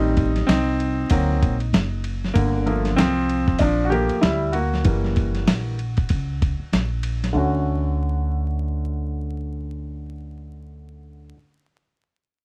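This cool, smooth jazz-hop excerpt sits in a hip hop frame at 96 BPM in 4/4, with a swung sixteenth-note feel. A bright upright piano takes a solo from the opening, its intimate, polished tone full of audible action noise and shaped by a low-pass filter sweep through 7.4 seconds. Beneath it, a pizzicato upright bass on steel strings lays down a woody, thumpy foundation. A dusty sampler-style drum kit enters at 0.2 seconds: compressed and gritty with overdrive, it has a medium-tuned snare, kick, hi-hat and ride, re-recorded in a small room and placed up front. The harmony moves through Am7b5, Daug7, Gm9 and F#7b9. At 7.4 seconds the drums drop out as the chords settle on Dmaj7, and piano and bass carry on to the end in a dry, close 1970s-style sound touched with vinyl crackle.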